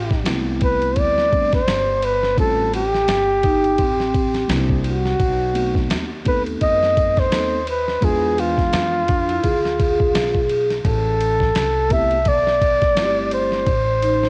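Jazz-hop with a smoky, mellow swing, this brief excerpt is led by an intimate, breathy flugelhorn carrying the melody up front through cassette-tape grit and tape echo, over a woody pizzicato upright bass, a gritty, pitched-down boom bap drum kit with a thumpy kick, clean tine electric piano chords moving through jazzy altered harmony, and a ringing soft-mallet vibraphone with slow motor vibrato that slips in briefly at 3.4 seconds and returns at 9.1 seconds, all set in a light studio reverb with a homespun cassette character.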